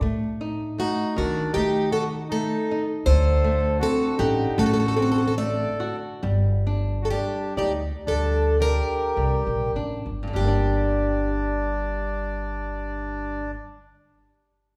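Bathed in the lush reverb of a church or concert hall, this mournful, longing fado-style ballad, cut from a longer piece, opens on fingerpicked flamenco guitar and dark, up-front pizzicato upright bass before a boxy, shimmering, octave-doubled plugged-in twelve-string acoustic guitar takes the picked melody at 0.8 seconds alongside a reedy, airy accordion second line, the rubato pulse slowing from 3.1 to 10.4 seconds as the chords move from D#dim/A through D7 to Gm.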